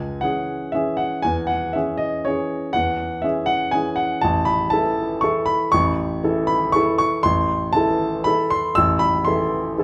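A warm, intimate grand piano plays a playful, sparkling classical waltz alone in a rubato three, its natural tone sitting up front with audible action noise, ranging from A1 to E6 and wrapped in a large studio reverb heard from further back in the room, in a brief passage cut from a longer piece.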